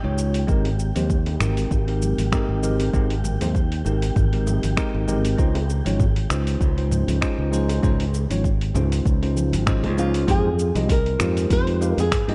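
A dark, lightly reverberant production with a faint mains hum frames this relaxed, sunny sunset chillout passage, cut from a longer piece, moving at 98 BPM in Ab major with a gentle sixteenth-note swing. A bell-like tine electric piano carries the chords through tape echo, moving from Abmaj9 to Dbmaj9 and then to Fm9 at 10.3 seconds, while a bright, growly fingered electric bass sits up front beneath it. A gritty, compressed sampler-style kit of finger snaps, hi-hat, shaker and toms, overdriven and set in studio reverb, joins with a deep, layered electronic kick that sounds re-recorded in a large room, and very quiet, distant bongos and congas add acoustic colour. An airy, breathy wind-like texture hovers in the background until 10.3 seconds. At 10.0 seconds a dark, fingerpicked flamenco guitar enters with the melody, carrying the passage into its closing section.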